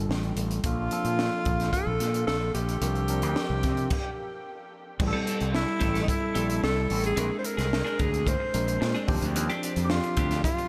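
A straight 4/4 groove drives this upbeat, breezy slice of polished 1980s jazz-funk pop, cut from a longer piece and bathed in a huge, dreamy ambient reverb. The crisp fusion drum kit sits up front with a punchy kick, high-tuned snare, hi-hat and crash in a small, pumping room, its sound saturated and gritty. Beneath it, a growling fingered electric bass pushes through overdrive, while a worn, slightly out-of-tune tine electric piano comps through analog chorus over chords moving from Bbmaj7 to C9sus4. A breathy alto saxophone carries the melody from 0.7 seconds, intimate and close-miked with a whispered subtone, light vibrato and a trail of delay. After a brief stop, the second section opens at 5.0 seconds on Am7, where a twangy, scooped, compressed electric guitar adds a picked riff drenched in lush chorus as the harmony drifts through Bb9 to Ebmaj13.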